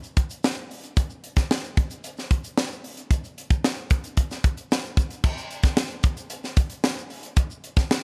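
Pop in a breezy, upbeat mood, carried by a tight funk drum kit of kick, snare, hi-hat and crash cymbal playing a straight 4/4 throughout this short section cut from a longer piece. The kit sounds acoustic and up front in a small room, with a high-tuned snare and a tight kick. A grainy, mellow tube shaker sits close but very quiet beneath it, the whole mix stays dry, and a new section begins at 5.2 seconds.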